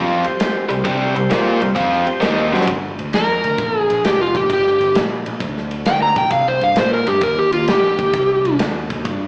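A heavy, gritty swung blues-rock and southern-rock jam opens on a biting, double-tracked guitar riff with slapback echo over a growly, punchy bass, as a smooth tonewheel organ on slow rotary speaker holds chords in the background and plays a fill. A dark, big-room drum kit with a medium-tuned snare and ride cymbal rolls through a fill before the riff guitar drops out at 2.7 seconds, and an up-front, overdriven slide guitar with slapback echo takes a solo melody from 3.1 seconds. The whole cut sounds like a live gig heard through a club PA, with small-speaker tone and moderate club reverb.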